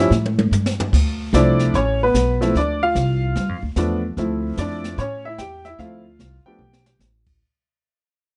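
Lightly reverberant and gently rolled off at the top, this playful, swinging jazz piano trio fades out from 0.9 seconds as a clear, slightly detuned upright piano with long sustain carries the melody over a woody pizzicato upright bass on steel strings, while a small-room brush kit with dark cymbals, a high-tuned snare and a punchy kick opens with a fill at 0.1 seconds and slips in another at 6.6 seconds.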